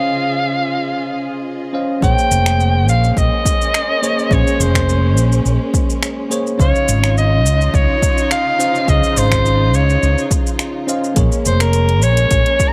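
A warm, vibrato-laden soprano saxophone with tape echo carries the melody over bell-like tine electric piano, rich bowed studio strings and a faint, glassy harmonics texture that drifts through the opening 2.0 seconds, before a round, dark fretless bass with tube saturation and analog chorus joins a punchy overdriven electronic kick and a filtered deep house kit of finger snaps, metallic hi-hat and shaker, giving this smooth, relaxed sunset chillout excerpt in Bb minor a lightly swung 105 BPM groove under Dbmaj9 and Bbm9 harmony.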